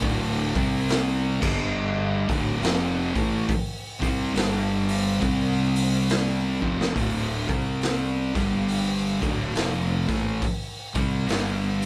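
Stoner and doom metal, hypnotic and sludgy with a swung feel, cut from a longer piece: two distorted fuzz guitars play the riff, one dark and up front and the other sitting in the background, over a growly, overdriven fingered bass and a gritty, saturated garage drum kit with a punchy kick and a pumping small-room sound, whose fill at 6.5 seconds leads into a second section, the band heard playing live in one room with light reverb.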